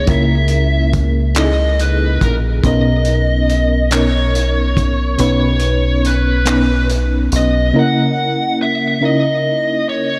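A slow, straight six-eight pulse at 47 BPM comes from a cloth-damped, thuddy drum kit of muffled kick, hi-hat and handclaps with a gritty, lo-fi character, while a deep, round fingered dub bass sits up front beneath it. This yearning, sultry R&B fragment in C# dorian moves from C#m69 to Bmaj9 and back, with a dark FM electric piano shimmering with tremolo and a biting, overdriven lead guitar carrying the melody through analog delay. The kick drops out at 5.2 seconds and the bass and drums fall away by 7.7 seconds, leaving piano and guitar afloat in a lush, dreamy hall reverb until the cut at 10.2 seconds.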